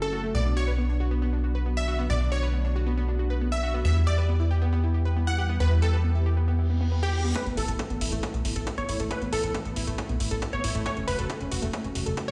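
A tight, up-front sawtooth sequencer bass drives this soaring uplifting trance fragment at 137 BPM in 4/4 over Bm, Em, Asus2 and F#m, with detuned supersaw stabs carrying the melody through digital delay, a round analog pluck playing chorused arpeggios, and a silky string pad holding chords in the background, all four pumping to the sidechain under light reverb in a bare room, until a reverse cymbal at 6.7 s leads into a build-up at 7.4 s where filter sweeps run on the stab and pluck and a punchy layered kick and metallic hi-hats join.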